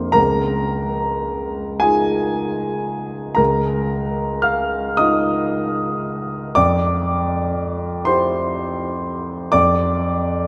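A grand piano rings up front in a vast, echoing cathedral space, its long sustain melting into a deep, wet reverb that hangs for seconds. This brief excerpt of impressionist solo piano moves in a slow, rubato 6/8, with open, suspended harmonies that drift from a rich chord at 0.2 seconds toward a bare, hollow close at 9.5 seconds. The mood is hazy and luminous, with the warm, present tone spanning from low bass notes up into the high treble.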